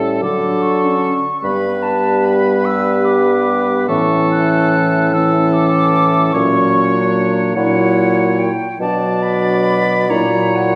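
Moving in a rubato 6/8 at 49 dotted-quarter beats per minute with uneven beats, this slow, elegiac and solemn classical romantic movement for wind quintet, cut from a longer piece, sets an airy silver concert flute melody with a crisp attack, entering at 0.2 seconds, above a clear oboe second line with light vibrato, a present clarinet and a warm French horn in accompaniment, and an up-front bassoon bass, heard from further back in a reverberant recital hall as the harmony moves from D through G and A to B minor and F#7.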